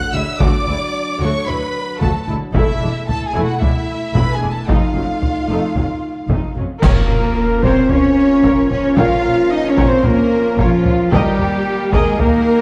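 Heroic and relentless, this cinematic orchestral film cue drives forward at 112 BPM in a straight 4/4, cut from a longer piece. From the outset a lush, expressive violin section carries the melody with vibrato and a soft attack, shadowed by a darker second violin line with portamento and a viola section filling the accompaniment, while a mellow French horn section holds sustained chords and a taiko ensemble pounds with hard sticks and a vintage, band-limited tone. Cellos and woody double basses anchor the bass in the background, the cellos smooth and even. At 6.8 s the harmony settles into Bb minor as a band accent lands: dark clash cymbals and concert bass drum strike close and dry, trumpets enter with background stabs, and very quiet trombones and distant, roomy woodwinds join the sustained chords. A huge, dark impact sits barely audible beneath this moment, and the whole production is dark and warm, set in a moderate scoring stage reverb.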